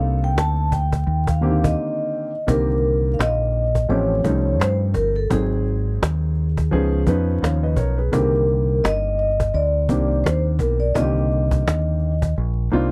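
A dry, close 1970s-style studio sound with vinyl crackle frames this smoky, mellow jazz-hop excerpt at 85 BPM, swung on the 16ths. A soft-mallet vibraphone carries the melody with a ringing, airy tone and slow motor vibrato, opening with a solo that includes a break from 1.8 to 2.5 seconds. Beneath it, a dark, smooth vintage grand piano with short sustain provides the accompaniment, a round, deep dub fingered electric bass sits up front, and a snappy cajon played with soft hands keeps the beat and closes on a drum fill at 12.4 seconds, while the chords move from Cm9 through A7alt, Ab7 and Db9 back to Cm9.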